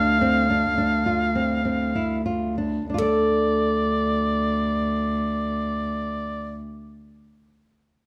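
In a straight 9/8 that slows over the opening 2.9 seconds from an eighth-note pulse between 184 and 220 BPM, this pensive, restless contemporary instrumental excerpt sits in D minor, tuned to A4 = 441 Hz, and moves from Dm7 to D5. A clear, present oboe with light vibrato sings the melody between D5 and F5 in a classical style, while a full-bodied, thumb-plucked nylon-string guitar with fresh strings and audible finger squeak plays arpeggios, and a single bowed cello holds a soft-attacked, floating sul tasto bass note on D2. Captured with close, detailed microphones and light reverb, the oboe and cello stop at 6.6 seconds and the guitar rings alone until 7.3 seconds.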